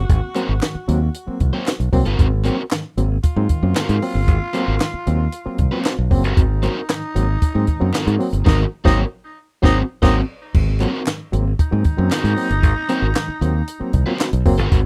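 A playful, strutting funk groove opens with a raspy, distant baritone saxophone line trailed by tape echo over a bright, up-front fingered electric bass, joined by a compact cocktail kit with dark cymbals and a high-tuned snare, barky electric-piano stabs with overdrive and fast tremolo, crunchy picked guitar, and very quiet group handclaps, with a band accent from 8.5 to 10.5 seconds leading into a new section in this dry, rough home-demo snippet cut from a longer piece.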